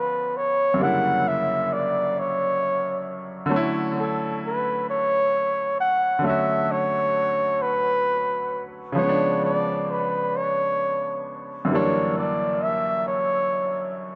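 A breathy flugelhorn and a clear baby grand piano open together in this late-night, yearning R&B excerpt in 6/8. The flugelhorn sings the jazz-style solo melody up front, mellow and smooth on top, with vibrato and scooped notes, while the polished, present piano accompanies beneath over altered dominant chords and a Bm11. Both parts carry dub echo, and the echo-heavy mix sits in a moderate spring reverb, with the two instruments ending together near 14.2 seconds.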